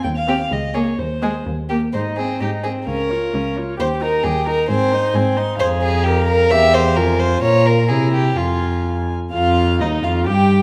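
Dramatic and restless, this quick classical-period string quartet excerpt sets a rich violin melody with light vibrato above a close, up-front second violin line, a distant viola accompaniment and a dark, smooth-topped cello bass, each voice bowed with a reedy gut-string period tone, turning toward the minor at 5.6 s inside a reverberant recital hall.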